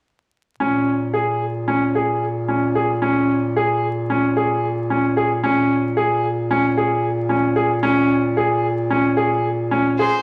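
Bright, open grand piano arpeggios ring with long sustain over a clear, present bass clarinet holding the bass, giving this restless, pensive slice of contemporary chamber music an uneven 9/8 pulse. Both sit up front in a reverberant recital hall, with vinyl crackle around them. At 10.0 s a single rich, biting violin, bowed close with light vibrato and an airy, earthy tone, touches the melody just as the cut ends.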